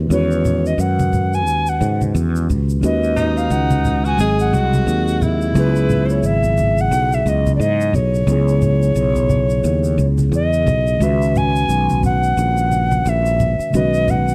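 Jazz-hop at 88 BPM with a lazy swing, cool and mellow in C# minor, shifting to C# dorian at 11.0 seconds in this excerpt from a longer piece. A growly, up-front fretless bass and a clean tine electric piano carry the chords from Emaj9 through C#m7, while a bright, reedy alto ocarina with airy vibrato and a soft attack sings the melody over close, hard-handed congas and tube shaker. From 3.2 to 6.6 seconds a breathy tenor saxophone adds a subtone second line with scooped notes and slapback echo, the whole piece sitting in a light small-room ambience.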